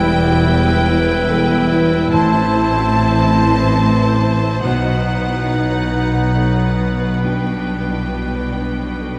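Cinematic film score for orchestra, this brief passage from a longer piece unfolds in a slow, rubato triple metre with a longing, moving mood, its harmony shifting from Em through Am and B to G/B. A rich, distant violin section carries the melody with smooth, even vibrato, while a punchy oboe traces a second line, joined in the background by a clear second violin section, an airy silver flute and a roomy clarinet. A lush viola section and a very quiet grand piano with deep bass supply accompaniment, as a mellow, close-miked French horn section holds sustained chords and a ringing, fingerpicked harp plays arpeggios. Underneath, clear cellos and a double bass section anchor the low end. The scoring-stage reverb lends moderate space, and a layer of vinyl crackle adds a textured surface.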